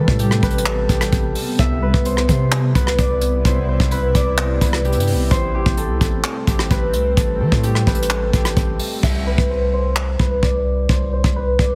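Heavily compressed and radio-like in a small room, this triumphant yet dreamy half-time hip hop and trap excerpt at 129 BPM in C major moves from Am7 and Cmaj7 to a bare C5 at 9.0 seconds, with a thumb-plucked, ringing concert harp melody softened by a low-pass filter and tape echo, a cloudy granular pad holding reverb-washed chords until 9.0 seconds, a deep, decaying sine-toned 808-style bass, and an up-front brush kit with punchy kick, rim clicks, handclaps, crash and hi-hats, the hi-hats dropping out as the harp's filter sweeps through the final stretch to 11.8 seconds.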